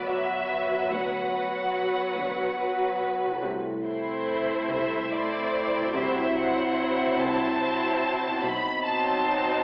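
Moving in a rubato 12/8 at 48 BPM, counted in dotted quarters, this slow romantic movement for symphony orchestra has a yearning, solemn character and is cut from a longer piece. A rich, smooth violin section carries the melody up front with vibrato and an even tone, while a second violin section adds a lush, expressive line beneath it with soft attacks. Violas supply bowed accompaniment with portamento, mellow French horns hold distant, roomy chords, and a thumb-plucked concert harp rings out arpeggios in the background. Lower down, a very quiet cello section and a focused double bass section share the bass, both stopping at 9.5 s, just before the other parts end at 9.6 s. The harmony moves from Bm/D through Am/C and F#m7b5/C to B7b9 at 8.4 s, heard from further back in a reverberant scoring stage with a 1.6 s decay and a filtered, telephone-like tone.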